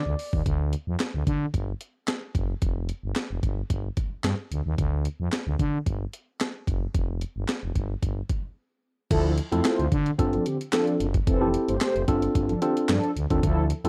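A worn, slightly out-of-tune tine electric piano flickers up front at the very start, lightly overdriven through a combo amp, before a growling, thick FM bass and a gritty, compressed sampler-style breakbeat drum kit take over in this funky, danceable early-eighties boogie funk excerpt at 111 BPM in straight 4/4. The opening stretch rides on bass and drums: a thumpy kick, medium-tuned snare, hi-hat, handclaps and crash sound tape-warm and up front beside the bass's sustained, fast-attack sine tone. A brief G5 chord appears before the groove returns to its chordless feel. After a short break, a mellow synth brass line enters at 9.1 seconds with a round, dark, detuned sawtooth tone, vibrato and chorus, and the electric piano comes back soon after as the harmony moves through Dm9, G9sus4 and Fmaj9. The sound is dry and close, like a 1970s studio with little reverb.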